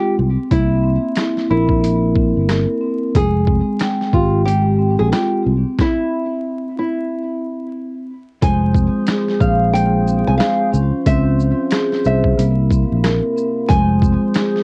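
A dark, fingerpicked nylon-string guitar melody with audible finger squeak opens over mellow soft-mallet vibraphone accompaniment in a boxy small room, soon joined by round, up-front fingered electric bass and a gritty, pitched-down sampler-style boom-bap kit of thumpy kick, hi-hat, rim click, shaker and snare, with a stop at 5.8 s before a fat, lightly overdriven tonewheel organ with slow rotary speaker arrives at 8.4 s, giving this moody, tough, swung hip-hop fragment a hazy home-cassette character with vinyl crackle and light reverb.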